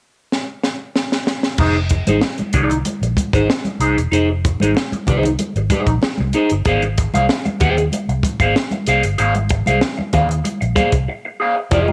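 Funk at 95 BPM in F minor, driving and sly, this excerpt opens with a drum fill on a compact cocktail kit, its high-tuned snare and punchy kick sitting up front in a small room, before the band drops in at 1.6 seconds on Fm7, later moving to Ab6. A slightly broken-up, lo-fi electric guitar with phaser plays picked accompaniment up front, over a round, foam-muted fingered bass and bright, thin-skinned congas in a live room. After a break near 11.1 seconds, a mellow, stringy auto-wah clav through a combo amp slips in with brief stabs just as the clip ends.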